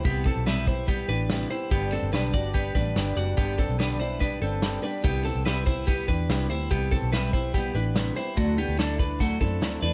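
A twangy, compressed twelve-string electric guitar plays clean picked arpeggios up front over a dark fingerpicked steel-string acoustic guitar from the opening, joined at 0.1 seconds by a round, foam-muted vintage electric bass and a warm vintage drum kit with a tight kick, medium-tuned snare, hi-hat and rolled-off top in a pumping studio room, giving this nostalgic, bright jangly indie pop passage, cut from a longer piece, a light reverb as it moves through Cmaj7, G and Dadd9.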